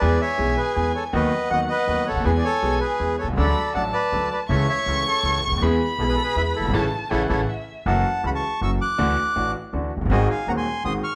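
A reedy, close-miked bandoneon carries the melody from the first beat of this elegant, nostalgic tango in 3/4 at 161 BPM, with a bowed violin singing a smooth, vibrato-rich second line with portamento above a brilliant, up-front concert grand piano and a woody, pizzicato upright bass. The rubato feel lets the A major phrases breathe in a large studio room with moderate reverb, and the band plays an accent together from 6.7 to 7.9 seconds. At 7.9 seconds the violin drops out and the music turns to F# minor, leaving the bandoneon, piano and bass to close on a G#7 chord.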